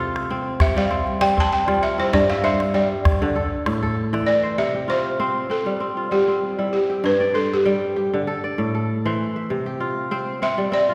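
West African traditional music for strings and xylophone, flowing and joyful with a light swing, heard as a brief cut from a longer piece. A crisp, ringing kora fingerpicks arpeggios up front throughout, while the woody, buzzing balafon carries the melody with rubber mallets and takes a solo over the first 4.6 seconds, as a small, close calabash adds percussion until 4.3 seconds. The performance sits in the wet reverb of a church or concert hall.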